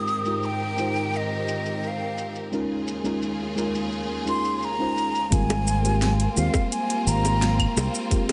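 Relaxed and blissful, this short sunset chillout excerpt at 86 BPM in Ab major opens with a breathy, expressive concert flute melody with delay over a soft, round FM electric piano with chorus and delay, clear bowed studio strings under a filter sweep, and a deep house drum kit of claves, shaker, metallic hats and a fat snare, all drifting through Abmaj13 and Eb9sus4 chords in a plate reverb. At 5.3 seconds a gritty, overdriven electronic kick and an up-front fingered electric bass with tube saturation join, followed at 5.5 seconds by tight, high-tuned bongos played close and dry with hard hands.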